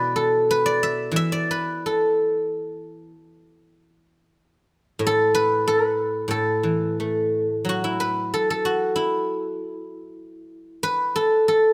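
Closely miked with light reverb, this elegant, pastoral excerpt of traditional Chinese music features a solo guzheng played with fingerpicks, its bright, silvery, ringing tone up front as it spans A2 to E5 in the A zhi mode at a loose, rubato 92 BPM in 2/4, moving into a new section at 7.7 seconds before the 11.7-second cut.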